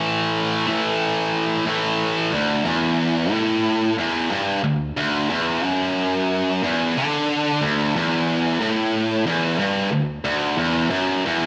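Rock with a driving, swaggering feel: a tight, bright electric guitar, picked and double-tracked, plays alone up front with distortion and slapback echo in a light reverb, moving from an A5 chord to a D chord at 2.3 seconds in this short cut from a longer piece.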